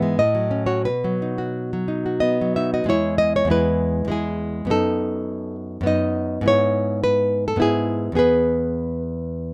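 A fingerpicked nylon-string guitar plays up front and alone in this sunny, nostalgic romantic classical piece in E major and 3/4, moving with rubato between 86 and 106 BPM across a range from E2 to E5, its acoustic, warm tone sitting in light reverb and a rough home demo mix as it passes from F#m/A and B into a new section at 2.9 s built on E, B7/F#, E/G# and a return to E at 8.2 s, cut from a longer piece.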